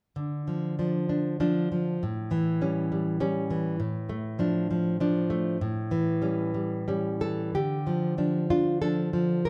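Close, detailed microphones place a lone nylon-string guitar up front in a recital hall whose moderate reverb lets each note bloom and fade for about 1.4 seconds. This short passage from a longer romantic piece for solo classical guitar is in D minor and 3/4, its rubato pulse moving between 85 and 104 BPM. The fingerpicked guitar has a dark, full-bodied tone, ranging from A2 up to Bb4, and carries a passionate yet intimate mood. Its harmony moves between D minor and A7, settling on D minor over A along the way. At 7.6 s a new passage begins on D minor, and the guitar plays on until the clip ends at 9.5 s.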